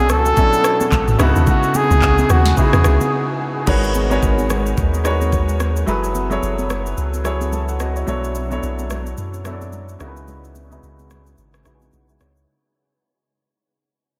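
Hypnotic and deep, this amapiano passage moves at 109 BPM in 4/4 with a swung sixteenth-note feel, and it is cut from a longer piece. It opens on a drop where a veiled, bucket-muted trumpet plays a jazz-style solo with soft attack and vibrato through analog delay, over a clear grand piano and a round, percussive log drum bass that sits dark and up front. The trumpet falls away by 3.4 seconds, and after a brief break a punchy sine sub bass with a pitch-drop attack takes over the low end from 3.7 seconds as the track begins to fade out. Throughout, an electronic afro-pop kit with a knocking kick, sharp snare, rim clicks, handclaps, shaker, toms and crash cymbal drives the groove, while ringing, high-tuned congas played with soft hands stay close and dry in the background. The piano, under a low-pass filter, carries minor eleventh chords from Bm11 through C#m11, G#m11 and F#m11, undergoes a filter sweep during the fade and closes with a fill from 11.4 seconds. 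A huge ambient reverb soaks the mix in a dreamy haze.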